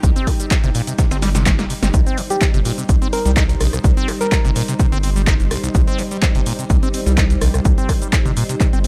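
A squelchy, resonant acid bass riff leads this raw, gritty acid house excerpt, its bright sawtooth tone coloured by phaser and tape echo and pumping with sidechain. Beneath it, a deep, round analog bass sits in the background, also pumping, while a lush vintage string machine holds sustained chords with ensemble chorus and 12-bit sampler grit. The beat rests on an up-front, punchy electronic kick and an overdriven analog drum machine of handclaps, hi-hat, rim click, shaker and snare. A very quiet, dusty sampler-style kit adds its own hi-hat, shaker and snare, and a drum fill arrives at 1.2 seconds. From 2.3 to 4.6 seconds a gentle, keys-like FM lead plays a short melody with vibrato, chorus, phaser and tape echo. The mix is dry, with little reverb and a gritty hardware sound.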